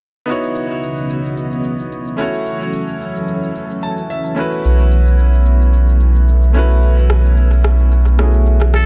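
Deep and hypnotic, this amapiano excerpt moves at 110 BPM with a lightly swung 16th-note feel, as a clear, intimate grand piano with audible action noise and a tape echo plays over mellow, vintage sawtooth string-machine cellos with ensemble chorus, moving through C#m11, F#m7 and B9sus4. An electronic shaker and rim click carry the groove, the piano adds a fill at 3.6 seconds, and a round, up-front sine sub bass enters at 4.6 seconds. A nasal, raspy trumpet with a straight mute appears at 8.8 seconds just before the cut, all set in a small room with a heavy echo.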